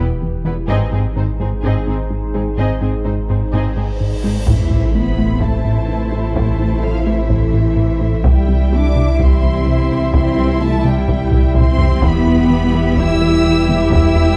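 A hybrid orchestral and electronic film score in A minor at 127 BPM, brooding and vast, opens with a build-up of lush bowed violins and a very quiet viola section over a deep, moody analog pad treated with chorus and phaser, a punchy wave-folded analog bass riff, a focused cello section, a round dub sub bass and a woody double bass section. A huge, bright cymbal swell and sub drop arrives at 4.0 seconds and lands as an impact at 4.5 seconds, where a distant high violin melody, a soft-attack French horn section and a band-limited, heavy-stick taiko ensemble enter, with a drum fill at 11.3 seconds. The production is dark with light reverb, the chords moving from Em and G# to Am, C and back to Em.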